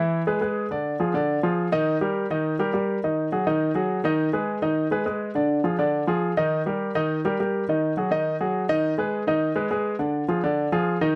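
Passionate and danceable, this brief Latin excerpt moves at a brisk 207 BPM in a straight 4/4, carried entirely by a solo grand piano spanning D3 to E5. The piano sounds clear, intimate and polished, sitting up front with audible action noise captured by close, detailed microphones under light reverb. Its chords cycle through E, Ddim, D#, G#5 and G#m/D#, the phrase stated once and begun again at 7.7 seconds before the clip ends at 11.2 seconds.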